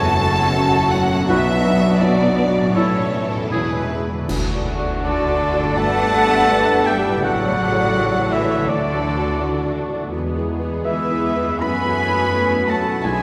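A clear violin section sings the melody in this tender, uplifting cinematic film-score passage at 83 BPM in a rubato 4/4, supported by a bright oboe, a classical-style clarinet, a hollow silver flute and a focused second violin line, over a felt-muted, intimate upright piano, lush violas, very quiet mellow French horn chords, softly ringing harp arpeggios, intense cellos and close-miked bowed double basses, all bathed in a cathedral-like reverb, while bright clash cymbals and a concert bass drum mark an accent as the music lifts into its second section from 4.3 to 5.7 seconds.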